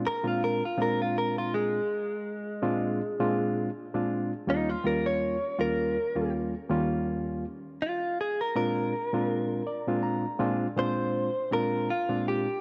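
Blues at 81 BPM with a soulful, swaggering swing in Bb mixolydian, this short cut from a longer piece sets a picked, compressed, scooped clean electric guitar solo with subtle chorus up front over a reedy, bright, lightly overdriven electric piano that moves through Bb9 and Eb9 chords, changing at 4.5 s and adding a brief fill at 9.3 s, all in a moderate plate reverb.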